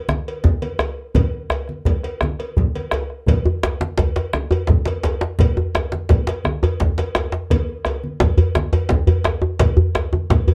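A medium-tuned djembe played with soft hands sits up front from 3.5 seconds in this driving, powerful West African drum ensemble passage in 12/8, joining a tight, cracking, saturated djembe, low-tuned thick-skinned congas, a round bombo held in the background and a metallic cowbell, in a dark production with light reverb cut from a longer piece.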